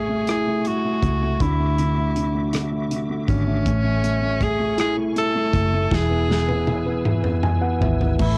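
A bright, forceful tenor saxophone carries the melody up front in this romantic, swaying six-eight pop ballad, its jazz-style phrasing full of vibrato and scooped notes, colored by cassette tape, plate reverb and analog delay. Beside it sits a felt-muted upright piano, soft and intimate with a thick, mellow, vintage tone, while a foam-muted fingered electric bass adds a round, punchy low end. In the background, a reedy tonewheel organ holds sustained chords, lightly overdriven with chorus vibrato, key click and a fast rotary speaker. An acoustic studio drum kit joins at 0.3 seconds with bright cymbals, a medium-tuned snare, a punchy kick, rim clicks and toms, moving into a fill from 5.9 seconds as the piano adds a fill of its own from 7.1 seconds. The harmony moves from Amaj7 to Dadd9, back to Amaj7 and onto E, and the whole fragment carries the lightly reverberant, homespun character of a cassette recording, cut from a longer piece.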